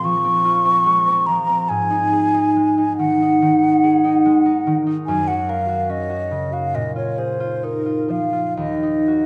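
An airy, hollow concert flute with vibrato and soft attacks sings a hazy, wistful melody over the ringing, fingerpicked concert harp from the very start of this slow, rubato impressionist duo in 4/4 at around 60-74 BPM, drifting from Bbm9 through Ab5, Gb and Bb7sus4 to Ebm with both instruments up front in a wet recital hall, in a 9.3-second fragment cut from a longer piece.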